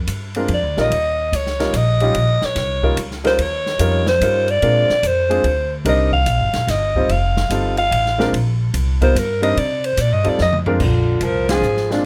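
Upright bass opens this relaxed, playful excerpt of small-group swing and bop jazz, a woody, thumpy pizzicato line sitting up front, joined within a second by an open drum kit and a concert grand piano. The band swings in 3/4 at 146 BPM in Bb mixolydian, moving through chords such as Eb9, Bb9, Cm7 and F9. A growling alto saxophone carries the melody as a solo over plate reverb, its raspy, gritty subtone full of scooped notes and pressed close to the listener. The piano comps with an intimate sound, its action noise audible, while the kit offers dark cymbals, a medium-tuned snare and a boomy kick in an airy small room, with a drum fill from 10.4 to 10.8 seconds. At 10.8 seconds a distant, roomy tenor saxophone enters with a punchy second line in its low register, and the band hits an accent at 11.4 seconds before the clip cuts off.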